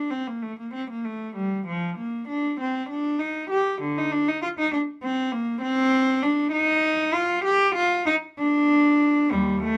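A lone bowed cello opens at 0.0 s and carries the whole passage to its close at 9.8 s, a solemn, grave fragment cut from a longer baroque-style suite movement for unaccompanied cello. One player, performing in period style, draws a rich gut-string tone with a reedy edge, and the instrument sits up front in the sound. The line moves in 6/8 at 65 dotted-quarter beats per minute, shaped with free rubato. Its range spans from a deep Eb2 up to G4. Light reverb surrounds the cello, and lossy compression artefacts colour the recording.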